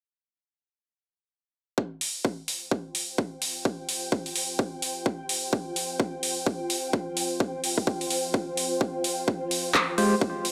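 A punchy, overdriven electronic kick drives this gritty, aggressive bass house cut from 1.8 seconds with a swung 16th-note feel, joined by an up-front big-room kit of handclaps and metallic hats and by an ethereal, airy pad that fades in under ensemble chorus, tremolo and sidechain pumping, before a hollow, percussive organ stab with chorus and delay strikes at 10.0 seconds, all within a dark production and moderate room reverb.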